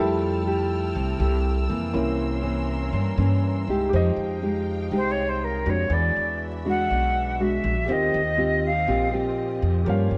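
An airy jazz flute carries the melody in this intimate, smooth bossa nova, entering at 5.0 seconds with a crisp, chiffy attack and expressive vibrato. Before it arrives, the grand piano takes a solo turn over the opening 3.9 seconds, its present tone ringing with long sustain. Underneath, a classical nylon-string guitar is thumb-plucked close to the listener, and a woody pizzicato upright bass sits up front at 121 BPM in straight 4/4. A bowed symphonic string section holds lush, even chords with vibrato. The harmony moves through Fmaj9, C7b9, Fm9, E9 and Eb69. Light reverb and a bed of vinyl crackle add to the intimate feel, and the passage is cut from a longer piece.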